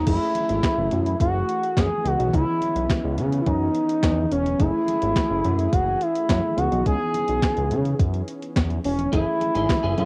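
A smooth, nasal synth lead carries the melody up front with chorus and vibrato, over a fat, saturated analog bass and a clean 12-bit drum machine whose thumpy kick, snare, hi-hat, handclaps and crash are overdriven and run through cassette tape. A brassy, bold pad glows in the background, a worn, slightly out-of-tune electric piano and distant congas sit very quietly underneath, and a clean, picked electric guitar riff with ensemble chorus slips in at 9.1 seconds. The excerpt is danceable early-eighties boogie funk with a straight 4/4 groove, cycling between F#m9 and C#m9 chords, with a dry, homemade cassette sound.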